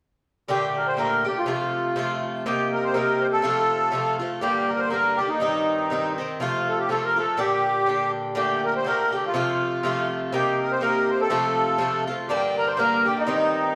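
Driving and wild, this Celtic polka in G minor runs at 122 BPM in 2/4 with a swung lilt, cut from a longer piece. A reedy, sweet accordion with light tremolo tuning carries the melody close and dry, while a picked Irish bouzouki with metallic double strings supplies the accompaniment, both sitting up front as a moderate recital hall reverb lends them a sense of space. The melody is played twice over a progression that begins on Gmadd9, and at 12.3 seconds an airy tin whistle with vibrato and tongued chiff slips in quietly as a second line.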